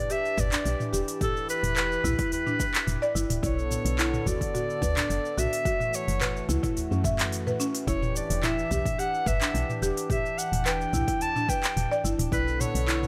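Organic downtempo in E dorian at 108 BPM, this earthy, warm excerpt from a longer piece moves through Em7, Bm7 and F#m7 in a straight 4/4 feel. A clear, classical-style clarinet carries the solo melody up front, treated with digital delay, while a buzzing marimba played with medium mallets spins dry, woody arpeggios that sit forward in the mids, also touched with delay. Beneath them, a vintage analog pad holds sustained chords with a slow attack, its detuned, wave-folded tone warbling through chorus and pumping with sidechain. A soft, round FM bass with a fast attack and dark decay anchors the low end from 0.4 seconds, joined at that same moment by a deep, tape-warm electronic kick. An up-front afro-pop kit adds cabasa, handclaps, smooth hi-hat and toms, and a small, close udu sits very quietly in the background until 11.3 seconds, all within a light reverb.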